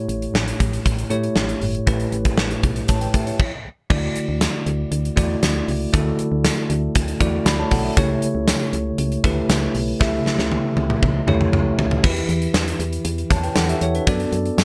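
A gated-reverb 1980s-style drum kit, with a tight kick, a medium-tuned snare, bright crash and hi-hat, tambourine and toms in an airy big room, drives this nostalgic, urgent pop excerpt at 118 BPM, over a clean, bell-like tine electric piano and a punchy, round, dark FM bass, pausing for a stop from 3.4 to 3.9 seconds and rolling into a drum fill at 10.0 seconds as the chords move from A7 through Dadd9 to Em and D6/F#.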